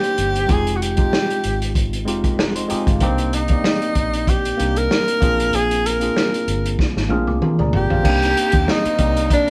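A breathy tenor saxophone carries the melody up front, its soft attack, vibrato and scooped notes giving this lush 1970s-style soul excerpt a silky, bittersweet voice in C minor at 95 BPM, with a lightly swung sixteenth-note feel. Beneath it, a mellow tine electric piano, worn and slightly out of tune, plays the accompaniment through chords moving from Fm9 to Cm9 and Bb7, while a vintage drum kit sits up front with a muffled, lo-fi sound, dark cymbals and a tight kick. A foam-muted fingered electric bass adds a round, dark low end, and an electric guitar through a small old amp slips in a slightly broken-up, compressed riff in the background from 2.2 to 3.2 seconds. During a drum fill starting at 6.8 seconds, a delicate, bell-like celesta glints briefly, and at 8.1 seconds a very quiet studio string section enters with bowed, sustained chords marked by portamento and a smooth top as the harmony returns to Cm9. 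The band plays live in one room with moderate studio reverb, lending the whole a cohesive, intimate feel.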